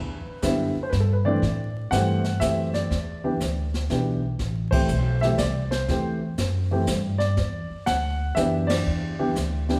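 A dark, mellow upright piano carries the melody up front, its action noise audible, over a thumpy, woody pizzicato upright bass on gut strings, and at 0.4 seconds a jazz brush kit joins with dark cymbals and a boomy kick, giving this late-night, swinging piano trio fragment in 3/4 its easy sway as the band hits accents at 4.6 and 8.6 seconds over Em7 and Am7 chords, the whole trio set in a church-like recital hall reverb with a layer of vinyl crackle.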